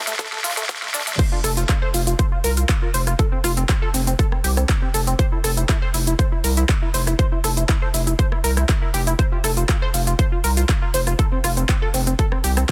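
A round, wave-folded analog bass pumping under sidechain and a big-room dance kit with a huge snare, metallic hats, handclaps, cabasa, rim click and crash open this expansive, hopeful progressive house excerpt at 120 BPM in F major. They are quickly joined by a detuned sawtooth arpeggio synth with chorus and tape echo and then a punchy, overdriven electronic kick, while a drum fill builds up until the drop lands at 1.2 seconds in a dense, heavily limited, dry mix.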